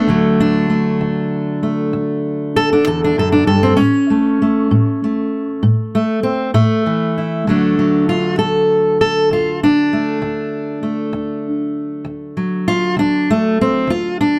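Closely miked with light reverb, this short cut from a longer acoustic country blues piece features a single fingerpicked steel-string acoustic guitar, warm and up front, rolling through a rollicking, swaggering 12/8 groove that moves from D to A and back to D as it shifts into its second section at 7.5 seconds.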